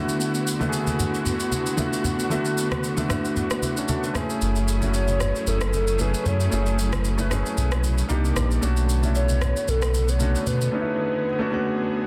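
A clear, intimate grand piano opens this soulful, deep amapiano excerpt, its action noise audible as it plays up front, while a lush, bowed string section holds sustained chords from a distant, smooth place behind it. An electronic shaker and rim click, produced and roomy, set a lightly swung groove almost at once, and low-tuned congas with a thick skin sit close yet in the background. At 4.4 seconds a full sine sub bass with an octave arrives up front, mellow and sustained, and at 4.9 seconds a hollow, woody, clarinet-like synth lead enters with a soft tone, vibrato, chorus and tape echo. The harmony moves through rich ninth and sixth chords, with the strings' vibrato adding gentle shimmer alongside the piano. The mix is dense and heavily limited, with light studio reverb giving the parts a touch of space.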